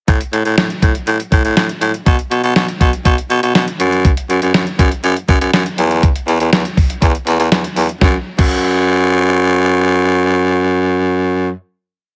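A breathy, raspy baritone saxophone carries the low bass line up front with vibrato and a gritty pop punch, over a thumpy, clean 12-bit drum machine beat of kick, medium-tuned snare, hi-hat and crash that drops out at 8.5 seconds, giving this nocturnal, melancholic synth-pop piece in F# minor at 121 BPM a pre-chorus that gives way to a final note, all under light reverb and a heavily compressed radio sound.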